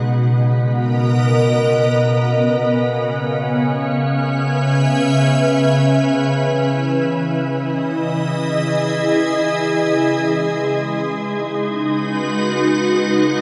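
A dark, huge reverberant space holds this serene, free-time ambient fragment in C# dorian, where a soft, pure organ-like pad, detuned and chorused with a shimmer reverb, sits up front sustaining Bmaj7, C#m7, Emaj7 and G#m7 chords from 0.0 s while a very quiet, nasal organ-like drone on C#3 enters at 0.2 s and hums beneath it until 13.4 s.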